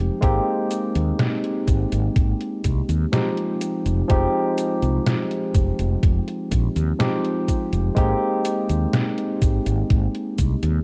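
A bright, barky tine electric piano, lightly overdriven through a combo amp with subtle chorus and analog delay, carries the chords from Abmaj9 to Fm7 and back in this hazy, nostalgic vaporwave excerpt at a slow 62 BPM in straight 4/4. Beneath it sits a dark, round fretless electric bass with tube saturation, up front in the mix. From 0.2 seconds a detuned 8-bit drum machine plays cabasa, hi-hat and a medium-tuned snare alongside a thumpy, sampler-style electronic kick, both in small room ambience, while light reverb and worn cassette-tape warble with drifting pitch give the recording its faded, dreamlike sheen.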